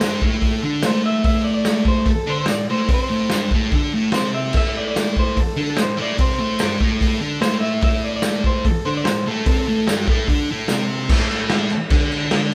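A thick, double-tracked fuzz guitar sits up front in this gritty, raw garage rock clip, picking a distorted riff over a single A minor chord and carrying on to the very end at 12.5 seconds. Beside it, a raw acoustic drum kit with a punchy kick, medium-tuned snare, hi-hat and crash sounds saturated and dark, its rolled-off top giving it a smooth edge in a bright stone room. An electric slide guitar plays the melody higher up, its tone slightly broken-up and compressed, until it drops away at 10.1 seconds. A jingly tambourine keeps to the background in a small room. The band plays live together in one room with light reverb, and at 11.1 seconds the harmony falls away into a brief closing stretch as this excerpt from a longer piece cuts off.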